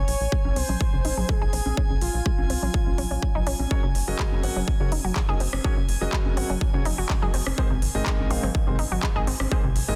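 Progressive house at 124 BPM, expansive and euphoric, built on Bbm7, Gbadd9 and Abadd9: a punchy, up-front electronic kick and a big-room kit with crisp hats and handclaps play alongside a tight, driving, sawtooth sequencer bass with tube saturation, while distant congas and rim clicks sit in the background. A round, nasal analog pluck spins arpeggios under a filter sweep, a velvety synth lead with vibrato carries the melody until 3.6 s, and a drifting, glassy harmonics texture hovers high above. At 3.7 s a dark, mellow baby grand piano enters with long-sustained stabs, everything sitting in a digital ambience with a dense, heavily limited modern master.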